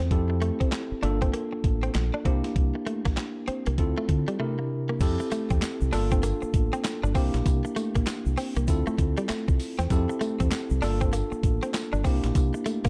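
R&B new jack swing with a flirty, upbeat swung feel, built on a warm, up-front tine electric piano and a bright, clean guitar riff with analog chorus over a round, punchy fingered bass and a gritty, pitched-down sampler-style drum kit with thumpy kick, high-tuned snare, handclaps and tambourine, moving through a brief break at 4.4 seconds before a grainy tube shaker joins in the background at 5.0 seconds, all set in dark digital ambience.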